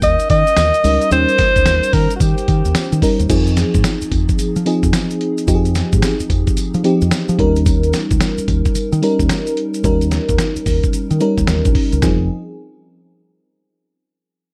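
A swung 16th-note groove at 110 BPM drives this slick, confident new jack swing R&B cut in F minor, where a gritty, compressed sampler-style soul drum kit with thumpy kick, tambourine and crash sits up front over a round, punchy fingered dub bass and a grainy tube shaker in the background, while a lush, dreamy FM electric piano with a soft pad layer and chorus moves between Eb7 and Fm7, and a mellow alto saxophone with vibrato and scooped notes plays a jazz-style solo only until 3.0 s, all within a dark production.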